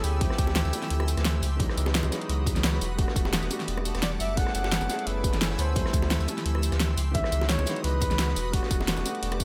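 A fast liquid drum and bass groove at 173 BPM in 4/4, with a gentle 16th-note swing, carries this lush, dreamy passage, driven by a punchy electronic kick entering at 0.2 seconds, an up-front pop kit with a fat snare, rim click and tambourine, a gritty, saturated breakbeat kit in the background, and tight, high-tuned bongos from 0.5 seconds. A deep, round sub bass sits up front beneath a dark, mellow baby grand piano with delay and a shimmering, ethereal pad with chorus, reverb and sidechain pumping, moving through minor eleventh chords from Dm11 to C#m11, Em11 and F#m11. A veiled trumpet with a bucket mute and light vibrato sings the melody through tape echo, briefly at the start and again from 4.0 seconds, all in a dry, close sound.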